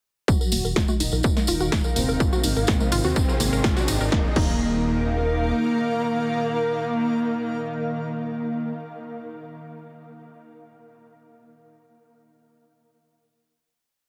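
An overdriven, up-front electronic kick drives this short, dark melodic techno piece at 125 BPM in Eb dorian, pounding four-on-the-floor alongside a punchy analog drum machine's snare backbeat, open hats, low conga and crash, jingly hand-played tambourine sixteenths, and a deep, rumbling detuned saw bass in sequenced sixteenths, while a bold, fat analog synth brass riff in octaves and a lo-fi, warbling pluck with a 6-step arpeggio loop drifting against the bar both carry filter sweeps through a build over Ebm and Abadd9. A very quiet riser and a cloudy granular pad feed the build, and at 4.1 seconds the music moves onto a final Eb5 chord, with a tense, string-like drone entering just before at 4.0 seconds beneath the sustained brass and blurred pad. The heavily compressed, radio-like sound sits in light reverb, with sidechain pumping on most synth parts and chorus and delay on the brass and pluck.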